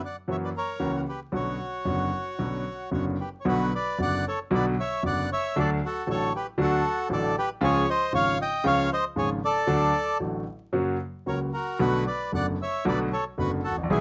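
Tango with a sultry, passionate mood and a rubato feel, this short cut from a longer piece pairs an up-front bandoneon, reedy and dark, carrying the melody from the start with a clear grand piano accompanying from its low and middle registers and entering at 0.3 seconds. The piano sounds intimate and polished, with long sustain and audible action noise, while close, detailed microphones, light reverb and a layer of vinyl crackle frame the duo. The harmony moves through minor and major chords before settling back on a minor seventh near the end.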